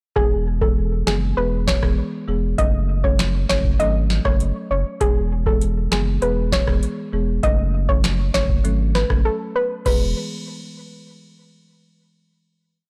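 A booming analog drum machine sits up front in this sunny, bouncy dancehall piece at 99 BPM in E major, its deep kick syncopated and answered by a tonal snare layered with finger snaps, with soft clipping on the snare, metallic hi-hats, rim clicks and crash cymbal, all with a tape-warm, small-room character. Beneath it, a thick, saturated sub bass plays a syncopated low line with a fast attack and sustained tone. A woody folk marimba struck with soft mallets adds dry, mellow syncopated chords that alternate between E and F#m. On top, a soft, round, dark pluck carries the syncopated hook between G#4 and D#5, colored by chorus and delay. The whole mix has a blown-out, overdriven digital ambience, and after a brief break at 9.3 seconds the piece settles on a final E chord at 9.9 seconds, closing out by 12.3 seconds.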